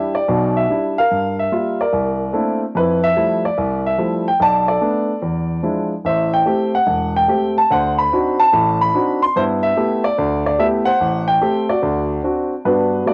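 A warm grand piano, natural and up front, carries this relaxed, swinging solo jazz piece from start to finish across about 13.1 seconds, reaching from E1 up to C6. It moves through rich extended harmonies such as Fmaj9, E7b9 and G69 with an easy swung eighth-note feel. The home cassette recording places the piano in a small, intimate room, and the passage is cut from a longer piece.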